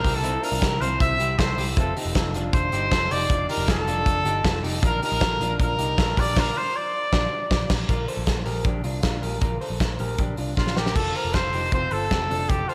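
Jangly indie pop with a breezy, youthful mood, this short cut opens with a clear trumpet carrying the melody, its light vibrato sounding distant and roomy yet up front in the mix. Beneath it, an electric guitar through a small old amp plays arpeggios in a dark, slightly broken-up, lo-fi tone, soaked in spring reverb, slapback echo and digital delay. A vintage muted picked electric bass adds a round, punchy foam-muted low end, while a modern studio drum kit with a tight kick, medium-tuned snare, hi-hat and crash sits mid-forward with a rolled-off top. The trumpet drops out at 7.7 seconds near the end of a band accent, then returns at 10.6 seconds as the drums play a short fill into the closing section. A lush hall reverb gives the whole band a big arena sound over a simple progression that moves through C, F, Dm/F and Bb before settling on F.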